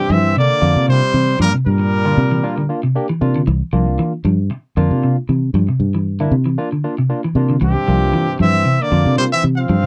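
An afrobeat excerpt in C mixolydian at 116 BPM, funky and driving, riding a swung sixteenth-note feel over a single C7sus4 chord in a dry, close 1970s-style studio sound with light reverb. A round, foam-muted fingered electric bass sits up front and anchors the groove, while a clean semi-hollow electric guitar picks arpeggios in a low register nearly throughout. A barky tine electric piano, lightly overdriven through a combo amp and coated in lush chorus, adds bright accompaniment from 0.6 seconds. The horns play in two bursts, from the start and again from 7.6 seconds: a clear trumpet with light vibrato carries the melody, sounding roomy yet up front, over a dark, punchy trombone section and a buzzy, thin trombone with a metal mute, both set back in the mix on a second line.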